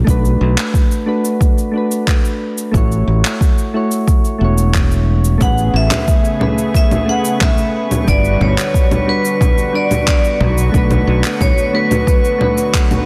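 Round, warbling electric-piano-like synth keys with chorus and digital delay open this blissful sunset chillout excerpt at 90 BPM in a straight 4/4, quickly joined by a deep, overdriven electronic kick up front, overdriven electronic cabasa, handclaps and congas re-recorded in a small room, and a growly, bright fingered electric bass with tube saturation. At 5.4 seconds a metallic, ringing vibraphone struck with hard mallets takes the melody with fast motor vibrato and digital delay, while a lush, detuned sawtooth unison pad sustains chords in the background, and at 6.1 seconds a glassy texture of drifting overtones adds calm, reverberant sparkle. The harmony moves through Bm7, F#m7/A, Amaj9 and Gmaj7 back to Bm7, all within light digital ambience and a dense, heavily limited modern master.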